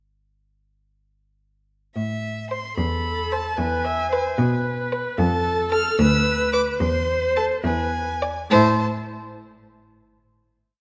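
Restless and urgent, this short, complete classical-period piece for string quartet in 6/8 begins at 2.0 s with a close, focused violin carrying the high melody over an up-front, clear cello that moves between pizzicato and sustained bass, while a rich second violin adds portamento to its pizzicato accompaniment and sustained chords, and a distant viola weaves a counter-melody; the music slows from 4.4 s into a final chord at 8.5 s, heard in a moderate concert hall reverb with a faint mains hum.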